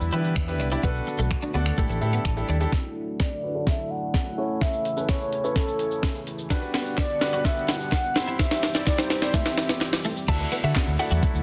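Straight 4/4 dance-pop beats from a thumpy, tape-warm 12-bit drum machine with a softly clipped snare drive this carefree, euphoric excerpt, where a shimmering chorused pulse-width pad and a brilliant grand piano pump under sidechain, a dark, round, foam-muted fingered bass drops out from 2.6 to 10.3 s, a clean twelve-string electric guitar riffs in the background, a mellow horn-like synth lead with vibrato and delay carries the melody through the build-up, very quiet group handclaps join, and a woody FM mallet pluck arrives with the drop at 10.3 s.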